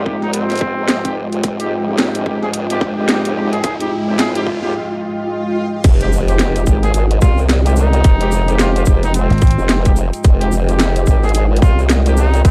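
A saturated, wobbling formant-sweep wobble bass sits up front in this playful, gritty glitch hop excerpt at 109 BPM in F minor, swung on the sixteenths and resting on an Fm9 chord, joined by a tight, layered electronic kick and an overdriven drum kit with a cracking snare and bright hats. A deep, moody analog pad holds sustained chords while mellow horn stabs and a vintage, grainy-edged trumpet melody move through filter sweeps and dub echo in the build-up, with a break and swell from 4.7 s before the drop lands at 5.8 s with a background impact and a faint grainy egg shaker. A punchy slap bass with an envelope filter pops in briefly at 9.3 s, all set in a dark production with light digital ambience.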